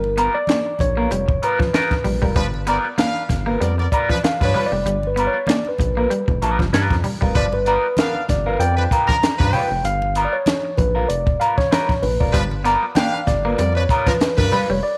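Playful and strutting, this funk excerpt moves at 96 BPM in 4/4 with a light swing on the sixteenths, sitting in G mixolydian over a single G7#9 chord. A mellow tine electric piano carries the melody as a solo from start to finish, its tone clean and direct. Underneath, a rubbery square bass sounds hollow and bouncy with a fast filter pluck, placed up front alongside a compact cocktail drum kit of hi-hat, punchy kick and high-tuned snare, while thick-skinned congas sit in the background. A clean, picked electric guitar adds wah-coloured accompaniment, and a twangy guitar at the edge of break-up plays a riff that drops out at 7.3 seconds and returns at 12.3 seconds. From 2.4 seconds a clear horn section with light vibrato adds a loose second line, all set in light studio reverb.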